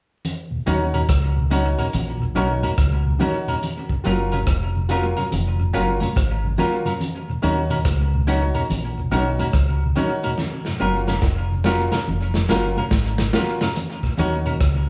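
Vinyl crackle and a dulled top end color this meditative, laid-back roots reggae fragment, played live in one large room with moderate reverb, as a gritty, saturated breakbeat kit of hi-hat, tight kick, rim click and snare sits up front beside a deep, round, dark fingered bass. A clean, hollow-bodied semi-hollow guitar with tape echo and a woody, vintage upright piano carry the accompaniment and stabs, while a soft, flute-like tonewheel organ with chorus vibrato and key click and thick-skinned congas with tape echo stay in the background. The harmony alternates between Ebm7 and Gbmaj7, and a drum fill runs from 10.4 to 13.8 seconds before the closing section.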